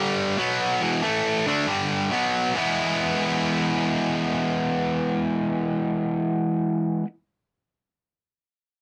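Rock guitar excerpt with a raunchy, driving feel, where a lone distorted electric guitar, bright, picked and double-tracked with overdrive, sits up front in light reverb and plays alone from 0.0 to 7.1 seconds, moving through power chords before landing on E at 2.6 seconds.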